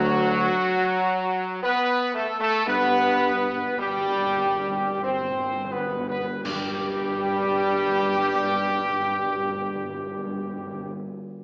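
Classical ceremonial fanfare in G major and 3/4, majestic and solemn, slowing from around 64 BPM as a mellow, up-front trumpet section carries the melody over clear, punchy French horn chords, background trombone chords, a mellow tuba bass and round soft-mallet timpani that fill from 2.7 s, before dark clash cymbals and concert bass drum enter at 6.4 s for a band accent at 6.5 s, all heard through a wet recital-hall reverb with an AM-radio tint in this fragment cut from a longer piece.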